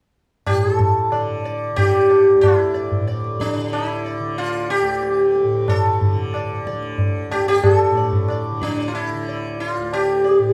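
Meditative and full of longing, this Hindustani classical passage is cut from a longer piece and moves at a steady 92 BPM in a straight 4/4. The sitar carries the melody up front between D4 and D5, its bright, plectrum-plucked tone buzzing and shimmering with sympathetic strings while keeping a round body. Beneath it, the tanpura holds a softly plucked drone from D2 to D3, its warm, shimmering buzz sitting further back in the mix. The low-tuned tabla provides percussion with a ringing, compressed and saturated sound, placed between the sitar and the drone in level. All three parts play together from 0.5 to 10.5 seconds, set in a moderate recital hall reverb that lends the performance a concert-hall atmosphere.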